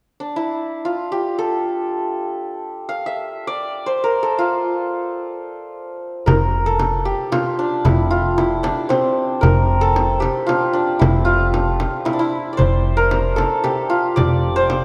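A passionate, stately Persian modal piece in F dastgah mahur, moving at 114 BPM in a straight 3/4 and cut from a longer work. A shimmering, ringing hammered santur carries the melody up front from 0.2 s, spanning C4 to F5. At 6.3 s a woody, growly pizzicato upright bass with dark steel-string tone joins on F1 alongside a small, bright frame drum set in its own small room, all within a moderate concert hall reverb.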